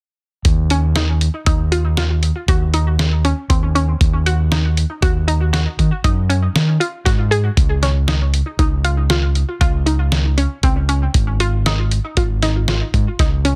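Progressive instrumental band music in 7/4 at 118 BPM, brooding and driving in Eb dorian, where an overdriven, punchy fingered electric bass and a muffled, sampler-style drum kit with thumpy kick and fat snare sit up front from 0.4 seconds, joined at 0.7 seconds by glassy, crystalline wavetable pluck arpeggios warbling through chorus and tape echo, all moving from Ebm7 to Db and Absus4 in a dense, heavily limited, nearly dry mix cut from a longer piece.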